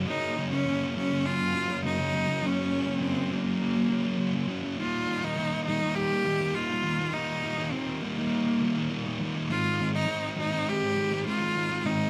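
A straight 4/4 pulse at 102 BPM drives this bittersweet, cathartic rock excerpt, cut from a longer piece. A thick, double-tracked electric guitar opens with a picked, distorted fuzz riff ranging from Gb2 to Eb4, sitting up front with a warm weight. A single bowed cello joins almost at once, carrying the melody between Bb3 and G4 with a clear, focused tone, close-miked vibrato and an equally forward presence. The harmony moves from Gb to Eb at 4.8 seconds and on to Ab at 9.5 seconds. A wet studio reverb with a 0.8-second decay wraps the pair.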